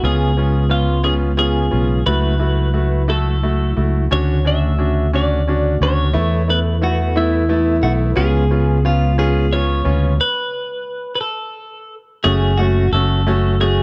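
A slow, straight six-eight sway carries this dramatic, aching pop ballad fragment, cut from a longer piece. Up front, a clean, compressed twelve-string electric guitar picks out the melody with a twangy tone, while a brilliant, natural-sounding grand piano fills in the accompaniment just beneath it. A growly, amped fretless electric bass with analog chorus sits prominently underneath, and a soft, flute-like tonewheel organ holds sustained chords in the background, its chorus vibrato and key click audible through a stopped rotary speaker. The harmony moves through dominant-seventh, major-seventh and suspended colours before everything halts in a stop at 10.2 seconds, then a new section opens at 12.2 seconds on a minor chord. Light digital reverb frames the whole in a dark, warm production.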